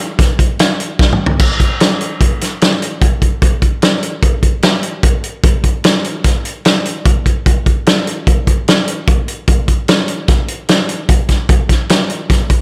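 A loose acoustic indie drum kit comes in at 0.2 seconds and carries this rock excerpt by itself, moving at 149 BPM in a straight 5/4 that feels intricate and wistful. It works through kick, snare, hi-hat, toms and crash cymbal, and a short fill from 1.0 to 1.4 seconds leads into the main stretch of the passage, which runs to 12.6 seconds. The kit sits up front and mid-forward in a studio room, with a punchy kick, a fat snare and dark cymbals under a rolled-off top. Light reverb adds a touch of space around the kit.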